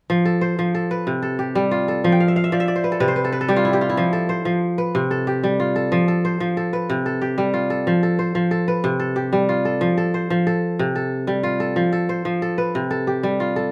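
Hypnotic and warm, this short excerpt of West African traditional music rolls along in a steady 12/8 as a solo kora spins ringing, fingerpicked arpeggios spanning the low register to the high strings, alternating between two chords throughout. The kora sits up front with a bright, crisp acoustic tone, slipping in a brief fill around 2.1 seconds, and is framed by a moderate studio reverb that lets each plucked note shimmer before the excerpt cuts off at 13.7 seconds.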